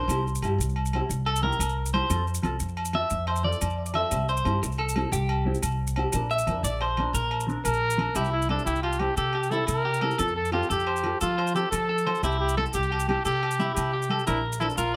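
Danceable and warm, this excerpt of highlife guitar band music moves at 119 BPM in 12/8, set in C mixolydian over a repeating C, F, C, Bbadd9 cycle. Up front, a clean, picked electric guitar spins arpeggios that carry the opening 8.2 seconds as a solo feature, while a dark, compressed electric guitar fingers accompaniment through a phaser, and a woody, thumpy pizzicato upright bass anchors the low end beside ringing, saturated agogo bells and grainy, close maracas. At 7.6 s a breathy trumpet with jazz-style vibrato steps forward to take the melody, all set in a moderate studio reverb.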